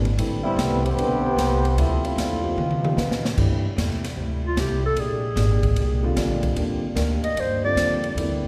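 A breathy clarinet carries the melody from 4.5 seconds, sitting up front with vibrato, a soft subtone and scooped notes in a jazz style. Before it, a mellow trombone section takes the opening line from 0.4 seconds, its soft attack and vintage vibrato giving this energetic big band swing a brassy glow, and a drum fill marks the handoff at 2.6 seconds. The swinging drum kit sounds airy and polished, with dark cymbals, a medium-tuned snare and a punchy kick. Underneath, a woody, thumpy upright bass with gut strings keeps the low end, while a picked acoustic archtop guitar with audible finger squeak and an upright piano fill in rich extended chords, the piano dropping out for a stretch in the middle. A reverberant concert hall surrounds the ensemble in this short cut from a longer piece.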